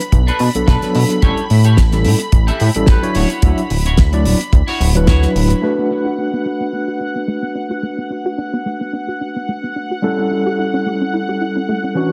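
A barky, gritty tine electric piano sits up front through a combo amp, its fast tremolo, sidechain pumping and tape echo giving this cosmic, sleek nu-disco excerpt its character as it plays accompaniment from 0.5 s to the end. In the opening section a glossy, nasal synth bass drives the low end, pumping against a dry, tight kick, while a damped 70s kit adds hi-hat and a fat snare with tape echo. A clean, picked electric guitar plays a riff drenched in lush chorus and tape echo under a filter sweep, and a thick, warbling unison pad holds sustained chords throughout with chorus and pumping. By 5.6 s the drums, bass and guitar have dropped away, and a soft, round pluck takes over with mellow arpeggios, chorused, echoed and swept by its own filter. The harmony moves from Bm7 through A7 to Dmaj9 before returning to Bm7, all set in light reverb within an echo-heavy mix and a gently swung sixteenth-note feel.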